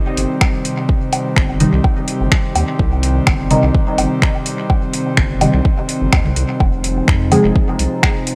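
Meditative and cavernous, this short dub techno cut moves at 126 BPM in 4/4 with a light swing on the sixteenths, tuned slightly below concert pitch. An airy, breathy pad holds sustained chords from the start, chorused and pumping against the sidechain, while a metallic, inharmonic drone sits in the background with an eerie, wave-folded shimmer of chorus, phaser and reverb. A round analog bass brings a deep, dark foundation, and an overdriven electronic kick drum sits up front beside a deep house kit of finger snaps and metallic hi-hats trailed by dub echo, with electronic woodblock and toms ticking in the background. At 1.6 s, mellow, full-bodied chord stabs enter, chorused, phased, filter-swept and echoing into the space. The harmony rests on C minor before shifting to F minor at 6.6 s, all captured in a dry, gritty hardware sound with light reverb.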